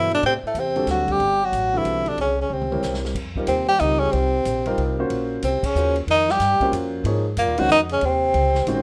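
Searching and cool, this modal jazz passage moves in a swung three-four lilt and is cut from a longer performance. A clear tenor saxophone carries the melody up front, shaded with vibrato and scooped notes. Behind it, a breathy trombone traces a mellow second line that sounds distant and whispered. Grand piano accompaniment and pizzicato upright bass, woody and thumpy, fill out the harmony, with plate reverb on the horns and piano, while the vintage drum kit sits low in the mix with a punchy kick and a rolled-off top. A drum fill from 2.5 s leads into a new section at 3.2 s, the band hits an accent at 5.6 s, and mostly suspended ninth chords give the passage an open colour within moderate room ambience and the rough balance of a home demo.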